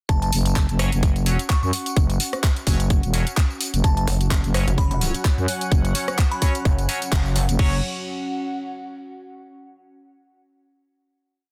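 A dense, heavily limited, dry mix opens straight into a swaggering, aggressive bass house drop at 128 BPM, where an overdriven, tight electronic kick drives four-on-the-floor beneath a programmed garage kit of hi-hats, handclaps, rim clicks, tambourine and crash cymbal with a light 16th-note swing, while a growling, thick FM bass chops out phrases up front under sidechain pumping. Glassy FM bell phrases ring in the background with tremolo and dub echo, nasal band-passed chord stabs echo sparsely through a phaser, and a warbly, lo-fi tape-like pad drifts in darkly just after the start. At 3.8 seconds a resonant sweeping pad swells in, and at 4.1 seconds a detuned, pulsing wobble bass answers the growling one until a band accent at 7.1 seconds gives way to a final chord ringing out to 9.4 seconds.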